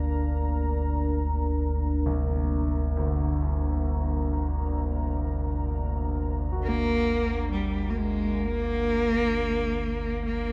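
A slow, straight 4/4 pulse at 66 BPM underlies this cavernous dark ambient drone, tuned to A4 = 441 Hz and resting on a G minor chord. Up front, a low rumbling drone blends detuned sawtooth and triangle tones with a warbling, vintage, ominous character, treated with built-in reverb and subtle chorus. Above it, an evolving pad holds sustained chords, mellow and moody with a sub octave and unison detuning, colored by chorus and its own reverb as it fades out across the full 10.5 seconds. A polished grand piano plays arpeggios through analog delay, fading in over the same span. At 6.6 seconds a single bowed cello enters up front with an expressive melody, its vibrato, soft attack and portamento carried by analog delay. The echo-heavy mix sits in a moderate plate reverb with a 2.7-second decay, and the passage is cut from a longer piece.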